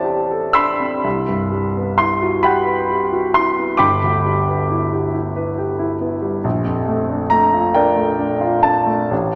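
Impressionist classical solo piano, hazy and serene, drifting in 6/8 at about 45 BPM with uneven beats and free rubato. A polished, up-front grand piano rings with long sustain across a span from G1 to E6, moving through Am11, Cmaj7#11, G6 and Bbmaj7. A soaking reverb, like a large scoring stage, lingers around it for this 9.4-second passage cut from a longer piece.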